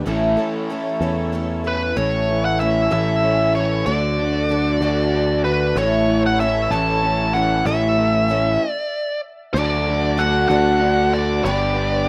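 A dark, distorted bluesy lead guitar with analog delay comes in up front at 1.7 s over a crunchy, double-tracked overdriven riff, a shimmering, octave-doubled picked twelve-string acoustic, a round, punchy electric bass and a biting string section held in the background, giving this nostalgic 6/8 folk and heartland rock excerpt at 63 BPM a rough home-demo feel with moderate reverb as the chords move through A, D and G, with a stop at 8.6 s.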